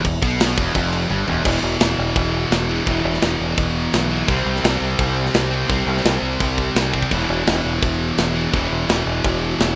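A rough home-demo sound frames this dark, relentless heavy metal excerpt in E phrygian at 170 BPM, where a bright high-gain guitar and a sludgy overdriven one grind out the riff over a growling, up-front fingered bass and a tight kit with bright cymbals, whose fill from 1.1 to 1.5 seconds launches the E5 to C5 section.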